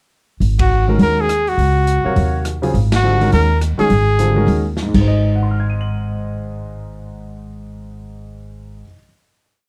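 Upright bass and a small-room jazz drum kit open this short, complete modal jazz piece together, and a band accent lands at 0.6 seconds as the trumpet enters. The mood is open and hypnotic, carried by a lilting swing. The bass is plucked, woody and up front in a two-feel, while the drummer keeps time on the hi-hat with sticks over a boomy kick, a medium-tuned snare and dark, smooth cymbals. The trumpet plays a solo of motif-based period phrases with light vibrato in a warm, jazz-style tone, bathed in plate reverb. The concert grand sits close and intimate, with audible action noise and deep low notes, comping in syncopated quartal voicings. After a drum fill at 4.8 seconds the band settles onto a final chord, and the piano rings on until 9.1 seconds in a dark, warm production with light reverb.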